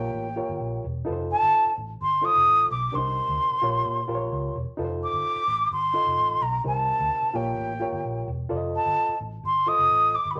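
A straight 4/4 groove at 129 BPM drives this short excerpt of uptempo 1960s-style soul in F mixolydian, cut from a longer piece and carrying a warm, danceable mood. A breathy concert flute carries the melody up front between G5 and Eb6, its tone expressive and tongued, with vibrato and lifted highs. Beneath it, a reedy electric piano, lightly overdriven and heard through its built-in speakers, supplies the accompaniment, cycling through Bbm6, F7 and Cm7. A vintage foam-muted fingered electric bass anchors the low end from E1 to Bb2 with a dark, round, punchy, amped sound. All three parts play throughout the 10.4 seconds, set in a wet club reverb.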